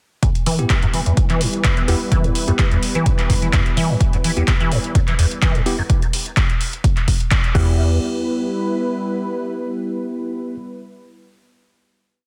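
Acid house at 127 BPM in E minor, this short, complete piece feels raw and trippy, with a light 16th-note swing over a single E minor chord. From 0.2 seconds an up-front, punchy electronic kick pounds four-on-the-floor, while a booming analog drum machine in a larger room adds metallic closed and open hats, backbeat handclaps and a crash. The liquid acid bass carries the riff: a squelchy, resonant square-wave line with filter sweeps, accents and slides, its 7-step loop drifting against the bar, coloured by phaser, ensemble chorus, dub echo and sidechain pumping. Above it a lush, detuned sawtooth pad holds slow-blooming chords with chorus and pumping, and a bell-like tine electric piano drops sparse, echoing stabs, one chord shape moved in parallel. After a band accent at 7.3 seconds the drums and bass fall away, and the pad and piano ring on through the final hit in a dense, heavily limited master with light reverb.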